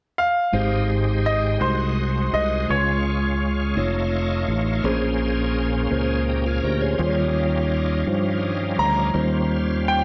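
A moderate scoring-stage reverb gives this short cut from a longer slow gospel piece a roomy, polished sound, and the mood is soulful and jubilant. It moves at 56 BPM in a straight 6/8 in Ab major. The chords run from Abmaj7 through Ab7/C, Dbmaj7 and Faug7 to Bbm9, Eb9 and Eb13. A bright grand piano carries the melody up front with brilliant, intimate tone and audible action noise, opening at 0.2 seconds, dropping out at 4.1 seconds and returning at 8.8 seconds. Beneath it, a mellow tine electric piano plays clean accompaniment through its built-in speakers. A tonewheel organ sits lower in the mix, holding full, shouting chords with chorus vibrato and a slow rotary speaker. A fingered electric bass anchors the bottom with a growly, punchy, direct tone placed up front.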